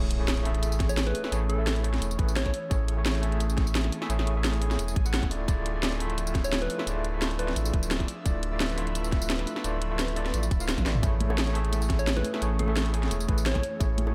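A liquid drum and bass groove runs at 173 BPM in 4/4 with a light swing on the sixteenths, its tight, overdriven electronic kick arriving at 0.8 seconds beneath a garage drum kit whose cracking snare, hi-hat, tambourine and toms sit up front with their own grit. A deep, thick sub bass holds the low end throughout, while a barky electric piano, pushed through a combo amp with medium tremolo and analog delay, carries the accompaniment over chords moving from Amaj7 to Dmadd9 and back in A major. Behind it, an airy, breathy pad drifts in sustained chords, shimmering with chorus and phaser. A round, gentle FM lead with a vintage warble plays short melodic phrases in the background, and a very quiet electronic impact marks the opening. After a drum fill, congas and bongos recorded in a small room join at 11.2 seconds, adding a warm acoustic layer in the background of this lush, warm excerpt, all set in light digital ambience.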